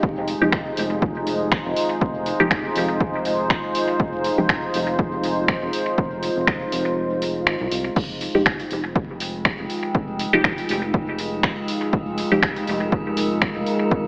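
Dub techno at 121 BPM in F minor, nocturnal and deep, built on a mellow, moody pad holding an Fm9 chord over a round analog bass with tube saturation, both pumping against a punchy, tape-toned kick while an overdriven deep house kit adds hi-hat, finger snaps and crash cymbal through dub echo. A muted, detuned chord stab with phaser and dub echo sounds from 0.4 to 4.5 seconds and returns at 8.3 seconds under a filter sweep, just after the kick drops out from 7.0 to 8.0 seconds. An eerie, metallic FM drone enters at 9.1 seconds, and the whole excerpt sits in a lush hall reverb with vinyl crackle and an AM radio tint.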